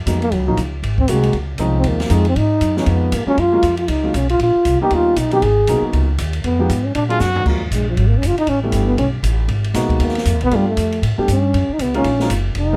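Close, detailed microphones and light reverb frame this smoky, cool small-group swing and bop excerpt. A breathy, smooth-topped trombone carries the melody up front with scooped notes, over a woody pizzicato upright bass, a natural-toned baby grand piano playing the chords, and an open drum kit with dark cymbals, a high-tuned snare and a boomy kick. A whispered trumpet with vibrato adds a brief second line at 7.1 seconds, and a drum fill at 7.2 seconds leads into a trombone solo from 7.4 seconds.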